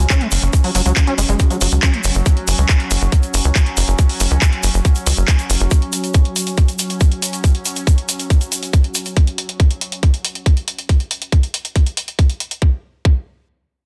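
A tight electronic kick sits up front and drives this hypnotic psychedelic trance excerpt at 139 BPM, joined by a layered drum kit with metallic hi-hats and handclaps, a grainy egg shaker in the background, and a punchy sawtooth sequencer bass that plucks through a moving notch filter until 5.7 seconds. A squelchy, distorted acid bass riff with delay and a filter sweep flares briefly in the opening two seconds, while a bubbling, resonant stepped-filter texture holds sustained chords around F#5 with chorus and sidechain pumping until 9.2 seconds. The dense, heavily limited mix carries light digital ambience, and the kick plays alone past 12.6 seconds into a short closing section.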